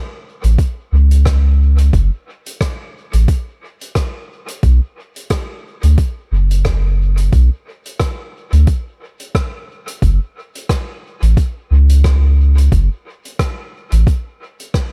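A deep, round sub bass sits up front in this meditative, hazy ambient dub excerpt, its soft triangle-and-square-wave tone striking with a fast attack and holding sustained notes between F#1 and D2 from 0.4 to 14.1 seconds. The tempo is 89 BPM in 4/4 and F# minor, with a 57% swing on the sixteenths giving the groove a loose, rolling lilt. A soft-mallet acoustic drum kit enters at 0.4 seconds, its hi-hat and rim click sounding distant and roomy in a studio space, trailed by dub echo and kept well beneath the bass. An electronic kick drum joins at 0.6 seconds, a soft, tape-tinged produced thump placed up front. The overall sound is dry, with the bass carrying most of the weight. The passage stays in a single section throughout.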